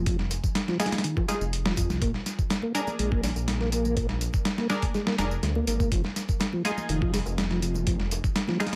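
Energetic and gritty, this short breakbeat excerpt rides an overdriven, thumpy sampler-style drum kit up front with a tambourine and very quiet bongos and congas behind it, while a deep, detuned saw bass rumbles beneath a mellow tonewheel organ riff with slow rotary and dub echo and nasal, band-passed chord stabs treated with phaser and cassette tape, all moving from Fm7 to Bb7 and back at 5.9 seconds in a dry, close sound.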